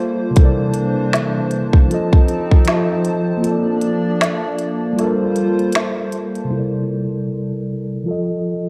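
An electronic, produced drum kit sits up front in this hazy, nostalgic lo-fi hip hop excerpt, entering at 0.4 seconds with a tight kick, woody snare, crisp hats and finger snaps that carry the roomy character of a large space. Alongside it, a mellow tine electric piano plays clean, direct accompaniment through a low-pass filter, moving through C13, F7, Bbmaj7 and Gm11 at a relaxed 78 BPM in 4/4 with a gentle swing on the sixteenths. A hollow, flute-like pad holds soft, airy sustained chords with a slow attack and long release, its chorus adding a gentle shimmer. A break arrives at 3.4 seconds, and at 6.5 seconds the drums and pad stop, leaving the electric piano alone under a filter sweep as the chords return to C13 and F7. The production is dark, warm and softly reverberant.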